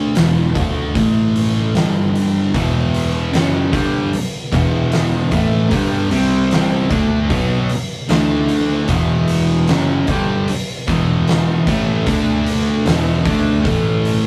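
A rough rehearsal-room recording with moderate studio reverb frames this heavy, sludgy stoner and doom metal passage in E minor, cut from a longer piece and moving at a slow, straight 76 BPM in 4/4. Two thick fuzz guitars lay down dark, distorted riffs from the opening moment, spanning E2 to D4 and sitting in the background alongside a picked electric bass, also in the background, that adds a round, foam-muted, tube-saturated low end. The oversized low-tuned drum kit enters at 0.2 s and sits up front, its big pumping room, fat snare and punchy kick coming through saturated and gritty alongside the hi-hat. At 2.5 s a cranked stack guitar joins with a bright, overdriven, double-tracked riff. The harmony moves through power chords on E, A and G before settling on E minor, then shifts to C, passes through a brief chordless stretch, and moves through D back to E minor before cycling through D, E and A at the close.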